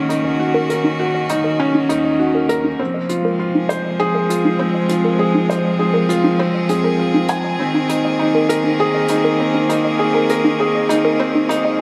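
A brushed acoustic hi-hat ticks through a straight 4/4 pulse at 100 BPM in a hypnotic, melancholic piece of piano and strings electronica, cut from a longer work. Up front, a felt-muted upright piano plays a riff between C4 and Ab5; its tone is mellow and intimate, with short sustain, audible action noise and a digital delay. Beside it, a clear string quartet, bowed with one player per line, light vibrato and a smooth top, holds intense sustained chords as the harmony moves from Ebm7 to Fm and then Abadd9. In the background, a warbling, lo-fi pluck with a dusty noise layer plays arpeggios through chorus and digital delay, and a filter sweep on it runs across the whole passage, which works as a build-up. A round, deep analog bass sits very quiet underneath, and a moderate echo chamber reverb with a 2.3 s decay gives the room a gentle spaciousness.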